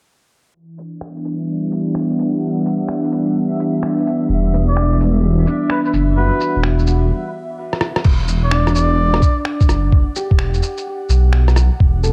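Steeped in concert-hall reverb and a low-pass haze, this nocturnal, rainy future garage excerpt opens on a breathy, chorused pad pumping over an Em7 and a muffled, pitched-down sampler-style kit of crash, finger snaps, rim clicks and shaker under a filter sweep, with a dreamy reversed granular texture drifting in the background; a menacing detuned saw bass enters at 4.3 s, followed by a dark, clean guitar carrying 12-bit grit and tape echo, a veiled cup-muted trumpet melody from 4.7 s, and, after a break and drum fill, a thumpy, tape-warm electronic kick from 8.1 s.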